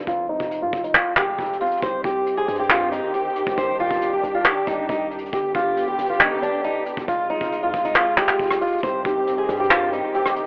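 Trap-flavored hip hop at 137 BPM in a half-time feel, this menacing, melancholic excerpt in C harmonic minor moves through Fm, Cm and G under a fingerpicked steel-string acoustic guitar melody that sits up front with a full-bodied jumbo tone, beside a tight, brushed vintage drum kit with handclaps, hi-hat and rim click. A dark, mellow grand piano appears in the background from 0.0 to 1.8 seconds under a filter sweep and returns at 8.8 seconds, while a deep, decaying sine-like 808 bass hums low and a lush, woody bowed string section takes up sustained chords from 1.8 seconds. Moderate spring reverb and a lo-fi home-cassette, telephone-like sound color the whole mix, with a cassette tape effect on the guitar, piano and strings.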